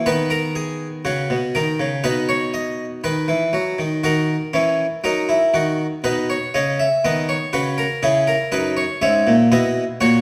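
A generous recital-hall reverb, with a decay of about 1.7 seconds, surrounds a harpsichord placed up front, its Flemish-style tone airy and brilliant, with octave strings adding shimmer to each plucked note. This is a baroque-style classical fugue in three parts, elegant and stately, moving at a measured 60 BPM in a straight 4/4. The solo harpsichord spans from F#2 up to E5 and plays alone throughout this short passage, which is cut from a longer piece. The opening phrase settles around B major over B/D# and B, and at 4.0 seconds a new section turns to D# minor before a richer Bmaj9. The passage arrives on F# at 8.0 seconds and breaks off at 10.2 seconds.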